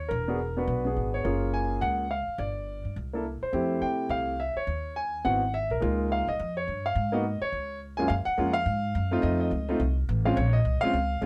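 A concert grand piano carries the melody up front, its tone rich and natural with a deep low end, ranging from Gb2 up to Ab5. Beneath it, a pizzicato upright bass on gut strings gives a woody, dark, thumpy line that sits close in the mix, and both instruments play together from the first moment to the last at 11.3 seconds. This playful, warm-hearted jazz swings briskly in 4/4, with rich harmony moving through colors such as E9, Gbmaj9 and Ab7alt before settling on Db69, and a brief break in the chords at 3.0 seconds. At 8.1 seconds the tune turns to a new section that passes through F7 toward Bbm. A light reverb gives the pair a gentle sense of space in this short cut from a longer piece.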